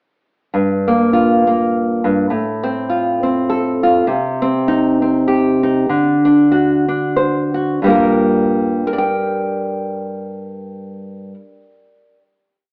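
Folk piece for solo fingerstyle nylon-string guitar in G minor, melancholic and haunting, moving in 3/4 at roughly 89-102 BPM with a light swing on the eighth notes. The guitar sits up front with a dark, full-bodied classical tone, fingerpicked in rolling arpeggios that span from G2 to G5. A short interlude runs from 0.5 seconds, passing through Gm7, F/A, Cm and D, and slows down between 4.1 and 7.8 seconds. At 7.8 seconds the guitar settles onto a final Gm7 chord that rings until about 11.9 seconds. A moderate large-studio reverb surrounds the playing, while the overall sound carries the narrow, filtered character of an AM radio broadcast.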